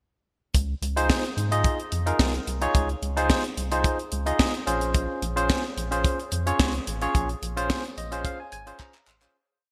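A tight, up-front funk kit drives this smooth, danceable early-eighties boogie funk piece at 109 BPM in 4/4. Its four-on-the-floor beat joins a high-tuned snare, a tight kick, hi-hat and handclaps, with a touch of gated reverb on the dry kit. From 0.5 seconds a rubbery, nasal square-wave bass with a filter pluck plays a fat, syncopated boogie line with chromatic approach notes. A barky, clean tine electric piano, played through a combo amp, adds syncopated rootless chord stabs. The harmony in Db major moves from Dbmaj9 to Bbm9 at 4.7 seconds under a bright, digital 1980s-style sheen with plate reverb and some lossy artefacts. A fade-out begins at 7.1 seconds as the electric piano and then the drums play closing fills.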